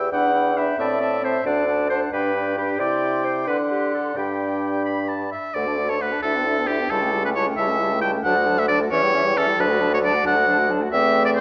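A quick classical-period movement for wind quintet in 6/8, spirited and graceful, cut from a longer piece. The mellow silver flute carries the melody from a distance in the background, while the bright oboe sings a second line up front with light vibrato. The clarinet and French horn fill in warm accompaniment, and the roomy bassoon anchors the bass with vibrato, all within a moderate stage reverb, until the music turns to a new section at 5.6 s.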